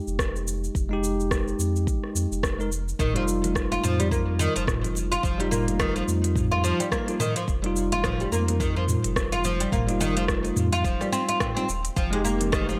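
A bell-like tine electric piano opens this organic downtempo excerpt on an Fm7 chord, its bright, clean tone carrying tape echo and sidechain pumping, with a round sine sub bass and a deep, layered electronic kick arriving almost at once. The organic electronic kit adds crisp hi-hats, rim clicks, shaker and toms, overdriven and re-recorded in a large room, all set to a lightly swung sixteenth-note feel. At 3.0 seconds the harmony moves to Ebadd9/F as a plectrum-plucked fretless oud enters with arpeggios, its woody double strings sitting up front with its own tape echo. Very quiet acoustic congas join at 3.2 seconds in a live-room sound. Light reverb and a digital ambience wrap the hypnotic, warm groove before the chords return to Fm7 at 12.0 seconds.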